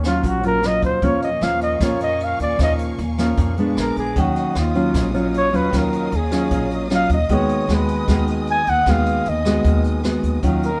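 A flugelhorn solo opens this melancholic, intimate bossa nova passage in Eb minor at 153 BPM, its warm, softly attacked tone carrying light vibrato and scooped notes up front, alongside a thumb-plucked classical nylon-string guitar, a woody, dark pizzicato upright bass and a distant, roomy brush kit with boomy kick, hi-hat and rim click. From 1.0 seconds a lush, bowed symphonic violin section adds sustained chords with an expressive, smooth top, set low beneath the band. The harmony moves through Ebm9, Bbm7/Eb and Bb7b9, back to Ebm9 and then to Abm7/Eb, and the group sounds as if playing live together in one room with moderate studio reverb, in a fragment cut from a longer piece.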